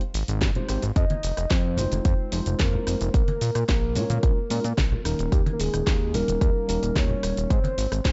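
Nu-disco with a groovy, sensual feel, where a punchy electronic kick and a fat, detuned sawtooth analog bass sit up front beneath a house kit of cracking snare, metallic hats, rim click and shaker, soft-handed congas in the background, a mellow tine electric piano pumping with sidechain and tape echo, and from 1.0 seconds a round, dark octave-layered synth lead with chorus and vibrato carrying the melody over an Abmaj7, Fm7, Bbm7, Eb7 progression in a lightly reverberant, cut-from-a-longer-piece mix.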